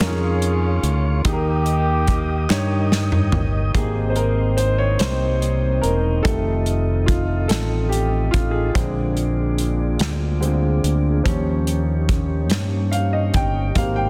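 A slow, uplifting gospel groove in 6/8 and Ab major opens with a mellow, jazz-style horn section carrying the melody over a boxy baby grand piano, a soft, flute-like tonewheel organ turning through a slow rotary speaker, a round, dark fingered electric bass and a punchy, small-room acoustic drum kit, with very quiet, crisp group handclaps beside it. The horns and claps drop out at 2.9 seconds as the drums play a fill, and from 3.7 seconds the piano takes a soulful solo over Abmaj7, F7, Bb7 and Eb7 chords. Beneath the solo, a very quiet, smooth-topped classical French horn section holds sustained chords, all set in light reverb with a dense, heavily limited modern sheen.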